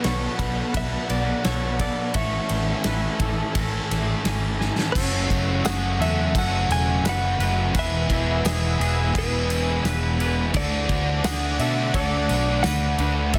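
Shoegaze-leaning dream pop rock at 86 BPM in a straight 4/4, this dreamy, hazy passage is cut from a longer piece and moves through Bm7 and Amaj7 before a drum fill at 4.6 seconds opens onto F#m7, E and D. A clean, direct-recorded electric guitar carries the melody with digital delay, while a twangy, fingered electric guitar spins arpeggios through analog chorus and delay, set back in the mix. Beneath them, a lush, detuned unison pad sustains slow-attack chords with chorus and phaser, and two darker guitars grind out riffs in the background: one compressed and overdriven with reverse reverb, the other a thick fuzz wash with ensemble chorus. Up front, a round, foam-muted vintage bass and a loose acoustic kit with a tight kick and a pumping small-room sound anchor the groove, and a jingly tambourine joins from 5.6 to 12.8 seconds. The mix is dry and the master dense and heavily limited, giving the haze a packed, pressing weight.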